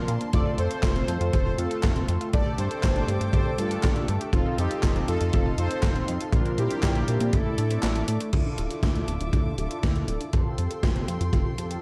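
A bold, fat analog synth brass lead with chorus and digital delay opens this nostalgic, danceable italo disco excerpt at 120 BPM, over bowed chamber strings with light vibrato in the background, a very quiet detuned unison pluck playing arpeggios and round, chorused synth brass stabs; it is soon joined by a glossy chorused pulse-wave bass, a tape-flavored gated 80s drum machine with handclaps, hi-hat, snare and crash, and a punchy, gritty acoustic kick that drops out from 7.8 to 8.3 s, while the lead stops at 8.0 s and the chords move from F through Bbadd9 to Dmadd9 and Fadd9 in a dark production with light reverb.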